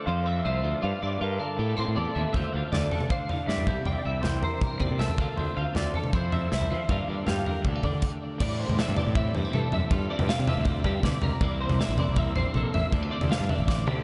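A dreamy, reverb-soaked mix with a long, huge ambient tail and a rolled-off top end frames this restless, intricate slice of math rock and midwest emo, cut from a longer piece and moving in a straight 4/4 at 159 BPM in D minor. From the start, a bright, twangy guitar through a small old amp carries the slightly broken-up melody until about 8.2 seconds. Alongside it, a clean electric guitar with ensemble chorus and delay spins compressed arpeggios, while a twelve-string electric guitar sits in the background with a tremolo shimmer. A growly, fuzz-overdriven fingered bass sits up front from the outset, and a punchy modern studio kit with bright cymbals, a medium-tuned snare, kick and toms arrives at 2.3 seconds. The harmony circles through minor sevenths such as Gm7, Am7 and Dm7 with C7 and G7sus4 colors, a brief stop lands just before the second section at 8.4 seconds, and a drum fill closes the final moments.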